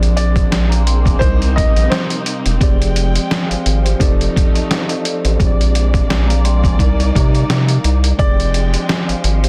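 A dark, reflective boom-bap hip-hop excerpt opens with a gritty, pitched-down sampler-style drum kit with a thumpy kick up front, a deep, round analog bass, a mellow tine electric piano and a lush, bowed string section with vibrato and portamento, while a woody, vintage upright piano plays a brief melody from 0.2 to 2.2 seconds and returns at 8.2 seconds, set in a dense, heavily limited, swung groove with little reverb.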